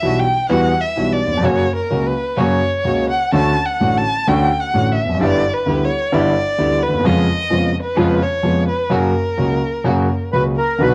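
A violin solo and a concert grand piano open this sultry, melancholic tango fragment, cut from a longer piece. It moves at 128 BPM in 4/4 with a rubato feel. The up-front, close violin sings with vibrato, portamento and a soft bowed attack, while the piano supplies the accompaniment with deep bass and long, open sustain; both carry a cassette-tape color. Behind them, a very quiet chamber string section adds distant, floating stabs with a pure tone. Harmonies drift from Emadd9 through F#, Dmaj7, G6 and C#7/E# before returning to F#. At 10.3 seconds a reedy, boxy bandoneon steps forward with the melody. A small room's moderate reverb and vinyl crackle give the home cassette recording an intimate, worn character.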